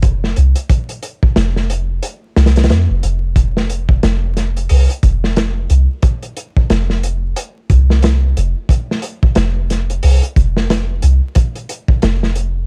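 Cinematic and smoky, this short cut from a longer trip hop piece moves at 90 BPM in 4/4 with a 16th-note swing that gives it a lazy, loping gait. A crunchy breakbeat kit of kick drum, snare and hi-hat sits up front, its small-room sound saturated and gritty, with a punchy kick, a medium-tuned snare and a rolled-off top. Beneath it, a soft 808-style bass holds the low end between F1 and F2, its deep, round sine tone striking quickly and then decaying. The production is dark and warm, dusted with vinyl crackle and kept nearly dry. Both parts play together for the whole stretch, the drums falling away at 12.5 seconds just before the bass ends at 12.7 seconds.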